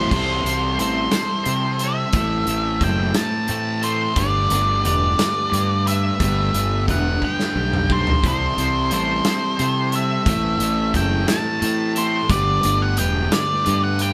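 A dark octave-fuzz lead guitar with analog delay carries the melody up front in this brooding, cathartic quiet-loud alternative rock excerpt at 59 BPM in 6/8, over a growly fingered bass with overdrive, a thick fuzz guitar riff and compressed clean guitar arpeggios in the background, and a loose indie drum kit with dark cymbals and a pumping room sound that plays a fill at 7.2 seconds, the band heard live in a stone room as the chords move through C6, Am and Gadd9.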